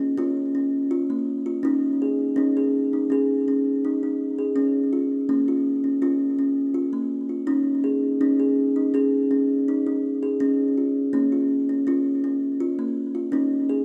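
A lone kalimba, woody and ringing with a hollow, up-front fingertip pluck and a touch of delay, drifts between Bb minor and Ab5/Db in this dreamy, gentle world-meditative excerpt at 82 BPM in 4/4, its mellow notes between Bb3 and Ab4 suspended in a wet concert-hall reverb over 13.8 seconds cut from a longer piece.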